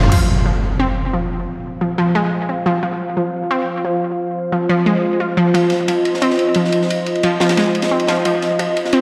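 A straight 4/4 pulse at 177 BPM drives this dark, futuristic slice of technical drum and bass, opening at 0.1 s with an up-front electronic impact and a bright, wave-folded unison pluck spinning tape-echoed arpeggios, joined at 1.2 s by a deep, detuned analog pad holding chorused sustained chords, before a crunchy, saturated breakbeat kit of ride cymbal and high-tuned snare, high-pass filtered with a rolled-off top, arrives at 5.5 s inside a dreamy, reverb-soaked hall.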